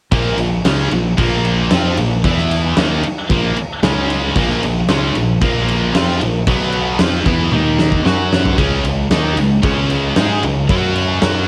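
A heavy, driving hard rock passage in Bb minor kicks in at once, cut from a longer piece and moving at 114 BPM in a straight 4/4. Up front, a bright, high-gain distorted guitar, double-tracked and picked, carries the riff, while a second overdriven electric guitar with a phaser also plays the riff from the background with a warm, picked, double-tracked tone. A fingered electric bass adds a growly, punchy low end, and a big-room acoustic drum kit with a fat snare, punchy kick, crashes and toms sits prominently in the mix, colored by a cassette-tape character. The chords shift restlessly through power chords such as E5, Db5, B5 and Gb5, with a Cadd11 passing through. A drum fill from 7.5 to 8.6 seconds marks a turn in the passage as the riff drives on. The whole take carries a home-recorded cassette feel with light reverb.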